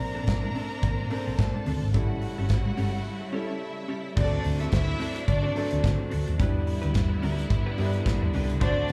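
A round, dark hollow-body bass, fingered and amped, sits up front in this danceable, sultry disco excerpt, with a punchy kick and a medium-tuned snare from an acoustic kit whose pumping room sound carries crash cymbal and hi-hat over a lightly swung sixteenth-note feel. A rich, smooth bowed string section carries the second line with vibrato, touched by plate reverb and slapback echo, while a second, clear and lush string ensemble holds sustained chords from a distant place in the background. A concert grand piano with a natural tone and deep bass and a clean, compressed semi-hollow guitar, dark and set further back with spring and plate reverb, fill out the accompaniment. Soft-handed, thick-skinned vintage congas play very quietly from 0.3 to 2.8 seconds before a break arrives at 3.1 seconds. The harmony moves from Bbmaj9 and A7 to D7 and Em7, and the whole performance is heard as a live gig through the venue's PA, wrapped in club reverb.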